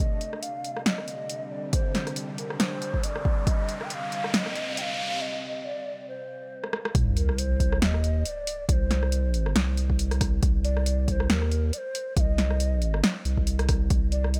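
A breathy, hollow ney opens this cavernous, brooding deep dubstep excerpt in C minor, its close-miked, tongued melody carrying vibrato and a coat of vintage 12-bit sampler grit and dub echo as it moves between Bb4 and G5. Beneath it, a tense, string-like drone sustains a C minor chord with a slow attack, vibrato and its own built-in reverb until it stops at 5.2 s. At 138 BPM in a half-time feel with a light swing on the 16ths, a punchy, overdriven deep house kit of hi-hat, rim click and snare sits up front, and an overdriven electronic kick briefly joins before a riser builds and a short break and drum fill lead into the drop. At 6.9 s a sub drop lands as the impact, the kick returns, and a thick, saturated sub bass with a fast attack pushes forward between C2 and Eb2 while the harmony falls away to bare bass and drums. The ney keeps singing over this heavy low end through to the end, all set in a light reverb.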